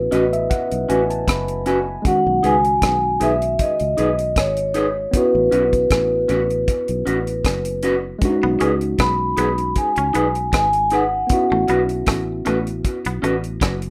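Sweet and tender, this lovers rock reggae fragment at 78 BPM carries a mellow, close-miked soft-mallet vibraphone melody with tape echo over a worn, slightly out-of-tune tine electric piano that opens with a lightly overdriven fill, a round, foam-muted fingered bass, bright, slightly broken-up guitar stabs from a small old amp with dub echo, and a deep, dry reggae kit whose tight kick, hi-hat and rim click sit up front with dub echo, while a clean, twangy fingered guitar riff enters at 8.4 seconds, the rough home-demo mix steeped in wet studio reverb as the chords move between A69 and B6.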